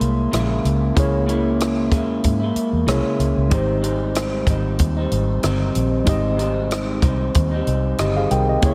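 A dreamy mix soaked in lush hall reverb and small room ambience carries this laid-back, nostalgic indie pop and bedroom pop excerpt at 94 BPM in Ab major, where an up-front, slightly broken-up, compressed electric guitar through a small old amp with subtle chorus and warbly pitch drift, a reedy, worn, slightly out-of-tune electric piano with a cassette tape character, a dark, round, foam-muted fingered bass and a dry cocktail drum kit with punchy kick, hi-hat and rim click all play throughout over a lightly swung 4/4, moving from Dbm6 to Abmaj7 at 3.5 seconds.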